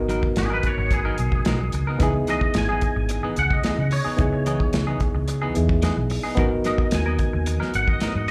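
A straight-eighth groove at 110 BPM in 4/4 drives this mournful, smoky soul blues in G# minor: a dark soul drum kit with a tight kick sits up front, with a round, foam-muted fingered bass moving under chords that shift from G#m9 to C#m9 and back at 6.4 seconds. A bright, picked clean electric guitar takes the solo with stabs coloured by tape and slapback echo, while a barky, reedy electric piano with slapback echo fills in the harmony. A twangy, fingered second guitar enters at 0.4 seconds with ensemble chorus and echo, all heard as a live club gig through the venue's PA in this short cut from a longer piece.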